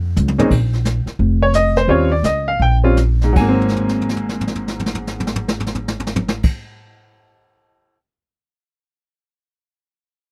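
A clear baby grand piano carries the melody in this short, playful jazz piano trio excerpt, its natural tone and short sustain sitting up front from 0.4 seconds. Beneath it, a woody, thumpy upright bass plucked on steel strings opens the passage at 0.0 seconds and stays close and present until 6.5 seconds. A brush drum kit with dark cymbals, a medium-tuned snare and a boomy kick adds a small-room, natural feel, with fills at the start and through most of the second half, and it plays on after the piano and bass stop, closing at 8.0 seconds. The swung feel slows down across the opening section before the harmony settles onto a rich ninth chord. The dry, close studio sound has a 1970s character and a warm mood.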